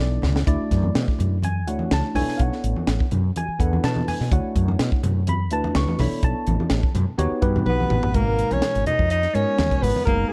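A dark, lightly reverberant excerpt of intense, driving electric jazz fusion at 125 BPM in B minor, where a worn, slightly out-of-tune tine electric piano with analog chorus comps over a round, woody fretless electric bass and a dry, up-front funk drum kit with a high-tuned snare, while ringing low congas sit in the background. At 7.7 seconds, alongside a drum fill, a close-miked breathy soprano saxophone with slapback echo takes the melody above a whispered, scooping tenor saxophone line as the harmony moves from Dmaj9 and Bm11 through D#7alt to G#m9.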